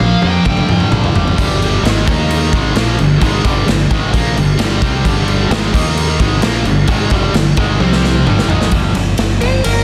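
A raw garage drum kit leads this short, driving hard rock clip, its punchy kick and medium-tuned snare sitting up front with a gritty, saturated edge, a rolled-off top and the pumping sound of a bright stone room, alongside crash, ride and toms. A fuzz-soaked fingered bass growls up front beneath it, holding the low end for the full length. Two bright, picked rhythm guitars carry the aggressive riff until about 8.9 seconds, one scooped and high-gain, the other tight and set further back in the mix. A smooth overdriven lead guitar appears briefly at the start, then returns for a short solo near the end at 9.4 seconds. Drum fills open the clip and return at 7.8 seconds, while the dense, heavily limited modern master keeps the sound dry and close.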